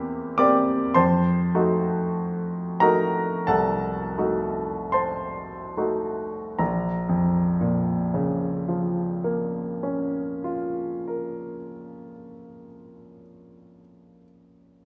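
Bathed in the wet reverb of a recital hall, a clear, present and up-front grand piano plays an elegiac, yearning classical fragment in Bb minor, cut from a longer piece, with a rubato pulse of 34-54 BPM in 4/4 that slows through its opening 6.6 seconds over C7/E and F7b9 before settling onto Bbm as the second section begins, the accompaniment ranging from Bb1 to E6 until it ends at 14.8 seconds.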